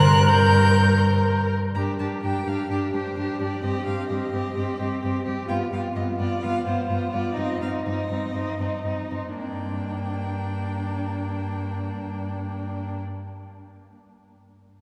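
A close, rich cello sits up front, anchoring the bass on G2 with smooth, even vibrato in this stormy, urgent excerpt from a quick classical-period movement for string quartet. Above it, a single violin carries the lead from C5 to G6 with a polished, vibrato-laden line, while a second violin adds an expressive, soft-attacked counterline with portamento, and a focused viola with a smooth top fills the accompaniment. The quartet is heard from further back in a cathedral with a long 4.5-second reverb, and the music slows between 4.6 and 9.4 seconds.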